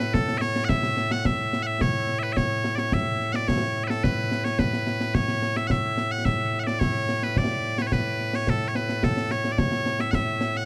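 The recording has a dark production with a light reverb. This short Scottish traditional pipe piece, cut from a longer performance, feels stirring and ceremonial in a straight 4/4. Loud bagpipes carry the melody throughout the 10.7 seconds, their piercing, continuous tone held up front as the solo voice and spanning A2 to F#5. Concert snare drum and concert bass drum play beneath them for nearly the whole passage, with an acoustic, small-room character. The pipes dominate the sound, while the drums lend a ceremonial weight.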